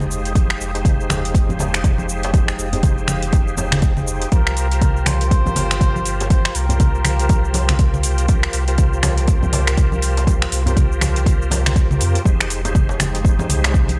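A dry, warm afro house excerpt with a spiritual mood: an overdriven, deep electronic kick sits up front over a tape-softened afro-pop kit of cabasa, finger snaps, metallic hi-hat and toms, with bright, hard-hit congas and a soft-handed djembe further back, while a round, tube-saturated sine sub bass, reedy tonewheel organ stabs with key click, slow rotary speaker and tape echo, and a moody, detuned analog pad with 12-bit grit all pump under sidechain, and a veiled, cup-muted trumpet with light vibrato and dub echo plays a brief jazz-style solo from 4.3 to 8.0 s.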